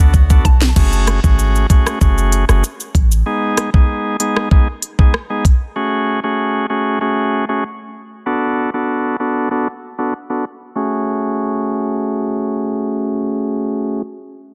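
Bouncy and hypnotic, this dancehall cut from a longer piece moves at 96 BPM in a straight 4/4 feel in F# minor, cycling through Bm7, F#madd9 and G#m. A bright, reedy tonewheel organ sits up front through the whole 14 seconds, run through a low-pass filter that sweeps from 0.8 to 10.8 seconds. An electronic island pop drum kit opens with a fill, its knocking kick, sharp snare, smooth hats, rim click, shaker and crash cymbal carrying the groove until 5.6 seconds, while a deep, boomy 808-style bass with a sine-like, dark tone decays beneath it until 3.2 seconds. In the opening moments a very quiet woodwind section holds tight sustained chords with light vibrato, and a hollow, detuned square-wave pluck with chorus touches a single high note alongside tight, high-tuned bongos in the background. The sound is dry, with a dense, heavily limited modern master.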